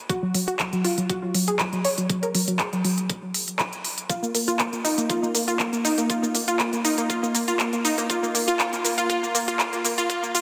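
An analog pluck, an electronic kick drum and a pop drum kit of cabasa, handclaps and crisp hi-hats all enter together at 0.1 seconds, the pluck spinning arpeggios from Gb3 to Db5. This is bittersweet, emotional progressive house at 120 BPM in a straight 4/4, a short cut from a longer piece that stays in build-up mode throughout. The pluck is round, bright and up front, its detuned sawtooth tone carrying a noise layer and a fast, decaying attack, thickened with chorus, tape echo and sidechain pumping while a filter sweep reshapes it across the whole passage. The knocking, layered kick sits lower in the mix with a high-pass filter and a tape-warm character, and it stops at 10.2 seconds. The percussion and hats sit prominently and pump against the sidechain. A lush hall reverb wraps the sound, and the dense, heavily limited modern master gives it a polished, produced sheen.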